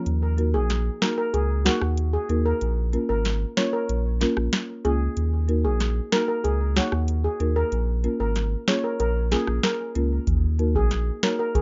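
Close, nearly reverb-free and rough like a home demo with dulled highs, this short cut from a longer dancehall piece in Eb minor moves at a tough, bouncy 94 BPM, with a booming analog drum machine's deep kick, crisp snare and metallic hats up front beside a round sine sub bass, a woody, mellow folk marimba played with soft mallets, and a shimmering steel pan melody carrying a delay from 0.5 seconds as the chords rock between Ebm and Bbm.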